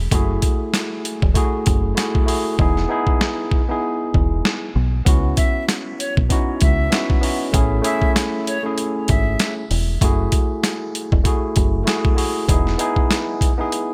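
This is a moody, reflective boom-bap hip-hop excerpt at 97 BPM in 4/4, with a swung sixteenth-note feel. A gritty, sampler-style drum kit sits up front, compressed and pitched down, with a thumpy kick and a medium-tuned snare; its hi-hats drop out briefly early on. Underneath, a deep, round, foam-muted fingered electric bass plays in a low register and stops at 12.7 seconds. A worn, slightly out-of-tune tine electric piano, lightly overdriven through a combo amp and colored by cassette tape, carries the chords at the front of the mix: F#m9, Emaj7, C#m11 and Amaj7. From 5.4 to 9.5 seconds, a breathy concert flute with a bright, straight, slightly unsteady tone adds a short, tongued melody treated with delay. Light reverb gives the whole excerpt a modest sense of space.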